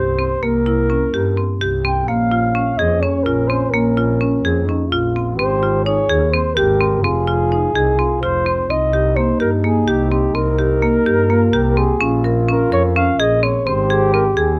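This restless, urgent piece of contemporary chamber music opens at 0.0 seconds with three parts sounding together in a driving 7/8 at 254 eighth-note beats per minute. A breathy, whispered flugelhorn carries the melody with a soft attack and vintage jazz vibrato, while a marimba struck with hard mallets spins bright, woody arpeggios on padauk bars. Beneath them, a single bowed double bass with a gut-string, period-style tone and a reedy edge anchors the low end, with light vibrato and an up-front presence. At 2.1 seconds a dark trombone enters with a second line, its punchy, pop-style delivery marked by scooped notes and a smooth top, sitting slightly further back than the others. The harmony moves through minor and major-ninth colours before a new section begins at 8.7 seconds, and the close, dry recording keeps every detail of the small ensemble intimate and immediate in this cut from a longer work.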